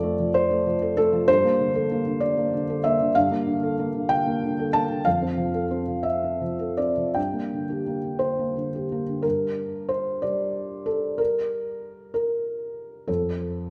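A felt-muted upright piano opens alone on an F chord, its tone soft, dark and intimate, with thick felt and audible action noise sitting up front in the sound. This reflective, melancholic neoclassical minimalist piece drifts in a rubato 6/8 at roughly 53-65 BPM in G dorian, moving through Gmadd9, F and Gm before a new section begins at 9.2 seconds and settles back on F at 13.1 seconds. The piano spans F2 to A5 and is surrounded by a moderate concert hall reverb with a 2.4-second decay, in a brief cut from a longer work.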